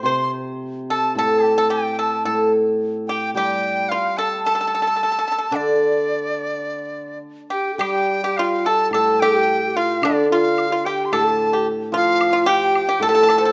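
A reedy large dizi with a buzzing membrane and vibrato carries the tender, wistful melody up front in this rubato Chinese traditional chamber passage at 109 BPM, over a ringing, shimmering hammered dulcimer and a dry, fingerpicked pipa second line, joined at 7.5 seconds by a mellow, hollow end-blown xiao and at 7.8 seconds by a woodblock set in the background, within a moderate recital-hall reverb captured by close, detailed microphones.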